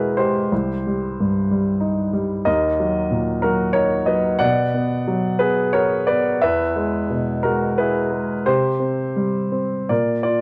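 A present, polished grand piano plays alone, up front, in this reflective, intimate neoclassical minimalist fragment in 3/4 at 90 BPM with a rubato feel, moving through chords from E and Cm to Ebm and Bm, back to E, and then to C5 and Bb, spanning C2 to F#5 and set in a moderate spring reverb with a softened, rounded top end.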